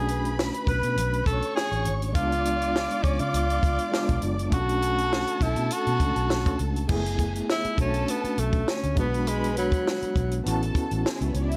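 Lush 1970s-style soul at 101 BPM in 4/4, with a swung sixteenth-note feel and a silky, bittersweet mood, this short excerpt is cut from a longer piece. A breathy, whispered tenor saxophone carries the melody up front with scooped notes and vibrato, stepping into a solo from 6.9 seconds before falling silent at 10.4 seconds. Alongside it, a lush bowed string section adds a second line with expressive portamento, while an overdriven tine electric piano, barky and gritty through a combo amp with medium tremolo, supplies the accompaniment. A vintage foam-muted fingered bass sits round and punchy in the mix, and a compact cocktail kit with a high-tuned snare, tight kick, hi-hat and crash keeps a dry, natural pulse. The harmony moves through jazzy colours such as Bm9, C#7b9 and F#m11, settling on A69, all set in light reverb and a small room ambience.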